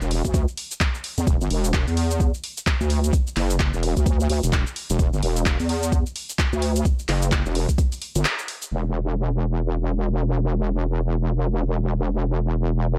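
Bass house at 129 BPM in E minor, this bouncy, aggressive excerpt opens on a drop led by a heavy, detuned square-and-sine wobble bass, compressed with chorus and sidechain pumping, joined at 0.2 seconds by a knocking, overdriven electronic kick that sits up front. A layered big-room dance kit adds filtered cabasa, handclaps and hi-hat in studio reverb, shuffling with a 16th-note swing, and the band hits an accent at 8.2 seconds. The kick falls away at 7.9 seconds and the kit at 8.7 seconds, leaving the sustained wobble bass to carry the fairly dry mix.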